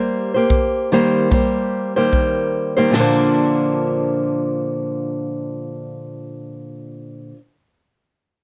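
Closely miked with light reverb and a detailed sound, this short, carefree acoustic pop excerpt moves with an easy-going swing. A dark, parlour-style fingerpicked steel-string acoustic guitar sits up front and carries the accompaniment throughout, moving from an Eb6 chord to Bbadd9 at 2.9 s. A natural country drum kit with a punchy kick, medium-tuned snare and crash cymbal joins at 0.5 s with an airy, polished studio-room sound before dropping out at 3.2 s.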